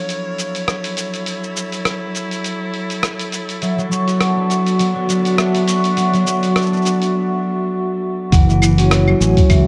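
A moderate plate reverb gives this short folktronica excerpt a soft, roomy sheen, and the mood is delicate and autumnal at 102 BPM in F# minor with a light 16th-note swing. A concert harp plays ringing, fingerpicked arpeggios through tape echo from the opening, over sustained bowed chords from a clear chamber string quartet carrying vintage 12-bit sampler grit. A muffled, compressed lo-fi drum kit of cabasa, claves, hi-hat and rim click ticks along underneath as the harmony moves from F#m7 to Bm7/F#. At 3.6 seconds a vibraphone with soft mallets enters as a second line, mellow and close-miked with a medium motor vibrato and its own tape echo. After a break, the strings stop at 8.3 seconds, where a growly overdriven fingered bass and a thumpy electronic kick drum arrive as the chords return to F#m7.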